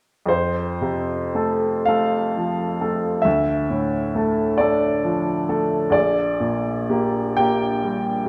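In a rubato 12/8 that drifts at roughly 36-46 dotted-quarter beats per minute, this serene, dreamy romantic nocturne in F major is a short portion of a longer classical piece. A solo upright piano, brilliant and woody with a polished, up-front presence and long sustain, plays alone from 0.3 to 8.3 s across a range from Bb1 to G5. It moves through F, D minor and G minor over Bb, all set in a moderate scoring-stage reverb that lingers for about 1.6 seconds.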